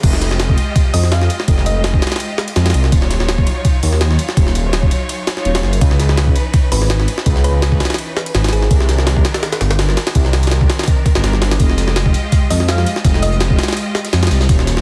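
A deep, rumbling detuned saw bass sits up front in this frenetic, nostalgic drum and bass and jungle drop at 166 BPM in F minor, driven by a compressed, pitched-up sampler-style kit with a thumpy kick and high-tuned snare in studio reverb, while a distant, lush symphonic string section holds sustained minor ninth chords through gritty 12-bit sampler texture, a round, tine-like thumb-piano synth pluck drifts in at intervals from 0.9 seconds with chorus and dub echo, and a very quiet, saturated breakbeat kit joins at 11.6 seconds under a dense, heavily limited master dusted with vinyl crackle.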